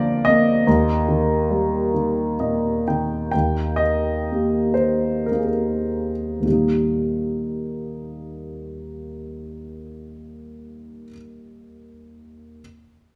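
A dark, mellow grand piano with a worn, intimate tone and audible action noise sits up front in this peaceful, lyrical classical solo piece in Eb major, which moves in a rubato 3/4 at 48-74 BPM, slows from 0.7 to 6.5 seconds with a brief piano fill around 1.9 seconds, and is framed by a moderate recital-hall reverb as a short cut from a longer work.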